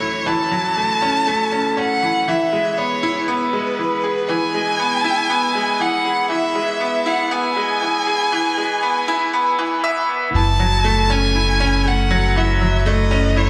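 A straight 4/4 pulse at 119 BPM carries this cinematic, moving piano and strings electronica, cut from a longer piece. From the start a bright concert grand piano plays a riff between E3 and E5, its brilliant yet worn tone sitting intimate and up front, with audible action noise and deep low notes. Over it, a single bowed violin sings the melody from B4 to A5, close and expressive with vibrato, a soft attack and portamento glides. The harmony moves from F#m7 to E through a build-up, and at 10.3 seconds the drop arrives as a round analog bass enters on F#1, dark and sustained with a fast attack, blending sawtooth, sine and triangle tones. The whole excerpt sits in a wet concert hall reverb with a 2.2-second decay, shaped by a high-pass filter, running to 13.5 seconds.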